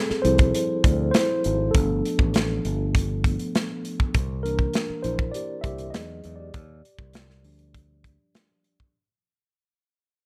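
A mellow, clean tine electric piano sits up front and takes a solo across this short bittersweet cut of lush 1970s-style soul, moving through Dm11, G7 and C9 before sliding to Emaj7 and a rootless Ebmaj7. A growly, punchy fingered electric bass and a polished, airy studio drum kit with a tight kick, medium-tuned snare and hi-hat hold a straight 100 BPM in 4/4 beneath it. The whole fragment sits inside a fade-out and a small room ambience, which gives it a silky feel.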